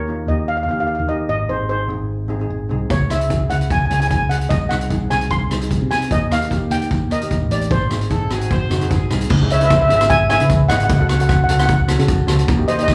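A straight 4/4 calypso groove drives along at 150 BPM, driving and intense, in a short cut from a longer live performance heard through a club's PA with light room reverb. A double seconds steel pan carries the melody from the start, played with soft rubber sticks for a mellow, shimmering tone, while a second double seconds pan accompanies lower down with hard rubber sticks, sounding bright and close-miked; both pans carry plate reverb and slapback echo. A fingered electric bass sits up front with a direct, warm electric tone, and a street-band drum kit joins at 2.9 seconds with a boomy kick, rim clicks, hi-hat and dark crash cymbals under a rolled-off top. At 8.1 seconds a clear horn section adds a brief, distant second line with vibrato, also treated with plate reverb and slapback echo. The harmony moves through D#, G# and C# minor chords before settling into C# minor from 9.3 seconds, where a new section turns toward F# minor over a C# bass.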